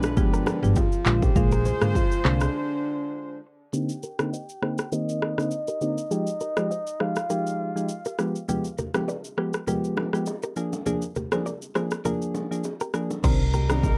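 Afrobeats with a mellow, smooth mood and a light swing, heard in a short cut from a longer piece with a dark, warm production and light reverb. An up-front afro-pop drum kit runs throughout with a deep, tape-warm kick, handclaps, rim clicks, shaker, toms and crash cymbal, while soft, round electric-piano-like synth keys carry the chords under chorus and a filter sweep from 3.7 to 13.2 seconds. A breathy, flute-like synth lead with vibrato and chorus sings the melody over the first 8.2 seconds, and a bright, clean, picked electric guitar, compressed and set in the background with analog delay, plays a riff through nearly the whole passage. A tight horn section adds a second line at the start and again near the end, alongside a round, amped hollow-body bass that drops out during a break at 2.5 seconds and returns at 13.2 seconds. Distant bongos and congas sit in a large room behind the mix, and the kick falls silent from 10.9 seconds before the band regathers on a minor ninth chord.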